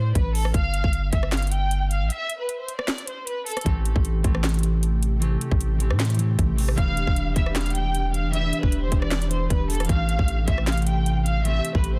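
A section of bowed violins opens this melancholic, menacing trap cut in A minor, its lush, vibrato-rich melody sounding distant through a low-pass filter and delay, while a deep, mellow 808-style sine bass sits up front with long, decaying notes. At a half-time 154 BPM, the electronic drum kit arrives almost at once with a hard-clipped kick, sharp snare, metallic hi-hats, rim clicks and handclaps, and a brief break follows shortly after. The violins fall away at 3.6 seconds as a bright, ringing concert harp takes up fingerpicked accompaniment, also softened by a low-pass filter. An ethereal, airy pad of detuned sawtooth and triangle tones with a noise layer joins in the background at 4.7 seconds, its slow-attack chords thickened by ensemble chorus and reverb, and the strings return with expressive portamento at 6.8 seconds. The harmony moves from Amadd9 and G7(no3) through Am7, Em7 and back to Am7, tuned slightly low at A4 = 438 Hz, all within a dense, heavily limited modern master.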